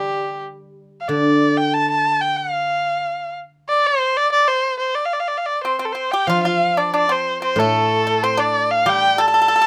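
A smooth, bowed erhu, up front with vibrato and portamento, sings a graceful, tender melody over a ringing, silvery guzheng in this rubato Chinese traditional chamber piece in 2/4 at 92 BPM in D yu mode; the guzheng falls away at 3.0 seconds, a dry, percussive pipa adds a second line from 5.6 seconds, and the guzheng returns at 6.3 seconds, heard through close, detailed microphones with light reverb.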